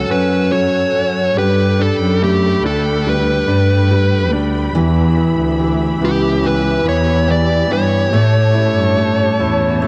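Pop ballad in a tender, heartfelt mood, moving at an unhurried pace in a straight four. A dark, overdriven electric lead guitar sits up front and carries the melody, while a bright, polished concert grand piano supplies accompaniment with brilliant tone. Beneath them, a muted chamber cello section plays the bass line, bowed con sordino with a veiled sound and vibrato, placed close to the listener. A lush studio string section holds sustained chords from a distance, smooth and even. At 4.7 seconds a full-bodied, picked steel-string acoustic guitar joins in the background with arpeggios, and finger squeaks are audible, as the harmony moves from F#m7 through Gadd9 and Em to A7 under light studio reverb in a dark, warm production.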